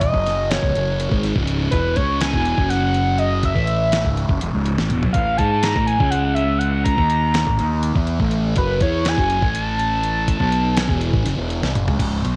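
Trippy and mysterious, this psychedelic rock excerpt runs at 246 BPM in an odd 7/8 metre with a straight feel, its chords moving through shapes like F7#9/A and Asus2. A screaming, wave-folded synth lead with vibrato and slapback echo carries the melody up front until 11.5 seconds, over a dark, double-tracked fuzz guitar riff colored by a phaser and a round, punchy overdriven bass. A gritty sampler-style kit with a thumpy kick and fat snare drives it all, adding drum fills at 4.8 and 11.6 seconds inside a moderate echo-chamber reverb.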